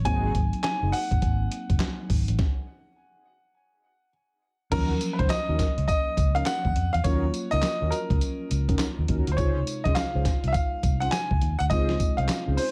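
Confident and punchy, this new jack swing excerpt at 103 BPM in Eb dorian rides a swung 16th groove on a gritty, tape-warm sampler-style drum kit with thumpy kick, handclaps and tambourine up front, a dark, round foam-muted electric bass, a lush FM electric piano with soft pad layer and chorus, a clear baby grand piano carrying the melody, and mellow detuned synth brass stabs that drop out after 1.0 s and return at 4.7 s, as the chords move from Ab7 to Ebm7 and Dbmaj7 after a stop between 2.4 and 4.7 s.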